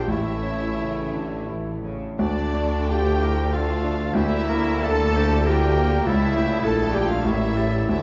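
A grand piano sits up front with a polished, long-sustaining tone, carrying the melody across the full 8.0 seconds of this classical passage cut from a longer piece. It shares the tune with a clear violin section whose bowed vibrato has a focused, smooth top. The mood is brooding and passionate, moving in a rubato 3/4 between 79 and 103 BPM over a progression that runs A, Dm, Em7b5/D, A7/C# and ends on a tense A7b9 at 7.3 seconds. Secondary lines come from a distant, pure-toned small flute group with a crisp attack, a solo oboe with light vibrato, a second violin section set back in the mix, and a very quiet, mellow clarinet. A close, even viola section and a very quiet, roomy French horn section hold the harmony. The low end rests on a lush double bass section, a faint, distant cello section and a vintage-sounding tuba, all bathed in the long wet reverb of a scoring stage within a dark production.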